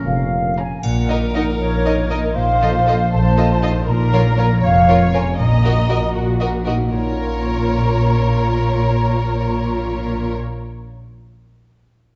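Up-front chamber double basses with a rich, expressive tone anchor this mischievous, sneaky, whimsical film cue in 6/8, cut from a longer piece, where a very quiet harpsichord, a bright clarinet, punchy French horns and a distant tuba sound only in the opening moments before a lush violin section with portamento takes the melody from 0.6 s over a smooth, even second violin section, vibrato-laden violas, soft-attack cellos, a mellow flute group and a ringing harp that plays throughout, while a dry triangle glints briefly from 0.8 s and moderate scoring-stage reverb gives the dark production its sense of space.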